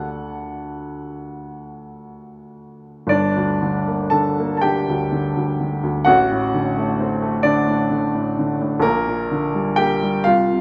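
A polished, woody upright piano sits up front in a moderate recital-hall reverb, its long sustain blooming into the room across this short cut from a longer piece. It is a romantic classical nocturne for solo piano in G minor and 12/8, yearning and wistful, moving with free rubato at a slow 35-44 BPM in dotted quarters and ranging from G1 to A5. Opening on D, the harmony settles onto G minor at 3.1 seconds, passes through D7 over A, and comes to rest on G minor over B-flat at 8.8 seconds.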